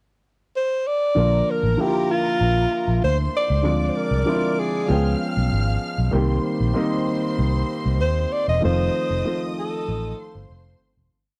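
A straight 4/4 pulse at 96 BPM carries this smooth, lush 1970s-style soul piece in Bb major, where a breathy, whispered alto saxophone enters at 0.6 s with scooped, motif-based call phrases, joined from about 1.1 s by an intimate grand piano pushing drop2 chords with grace notes and audible action noise, then at 1.2 s by a round, foam-muted electric bass line full of slides and chromatic approach notes and a woody, vibrato-rich string section holding long high lines, all captured in a dry, close small-room sound before a fade-out from 8.6 s.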